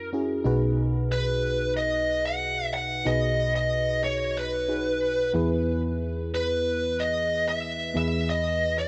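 A smooth, overdriven lead guitar with tape echo carries the melody up front over a mellow, round, warbling FM electric piano with chorus in this glossy, nostalgic pop excerpt at 92 BPM in B major, moving from B6 to E at 5.3 seconds under a moderate plate reverb.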